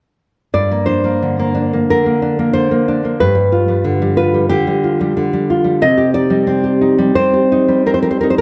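Romantic solo classical guitar in a wistful, passionate mood, this short passage cut from a longer work moves with a free, rubato feel over a 4/4 pulse. A single fingerpicked nylon-string guitar sits up front with a full-bodied, deep tone, playing from 0.5 to 8.4 s through a harmony that shifts from Gm to G7 and then to Cm. Tape echo colors the guitar, and a moderate recital-hall reverb surrounds it.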